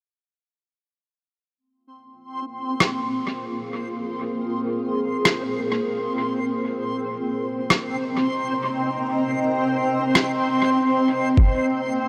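Deep and spacious, this ambient dub passage, cut from a longer piece, floats in free time as a reversed, dreamy backwards swelling texture rises from 2.3 seconds, joined by a cloudy, full-bodied granular pad that fades in over Bbsus2, Cm7 and Bb7sus2 chords. A muffled, pitched-down electronic rim click, overdriven and sent through dub echo, sits up front until 10.3 seconds, and a thumpy, compressed electronic kick drum lands near 11.4 seconds. Light reverb surrounds the mix, with the pad staying mellow and blurred while the swelling texture sounds bright and detuned.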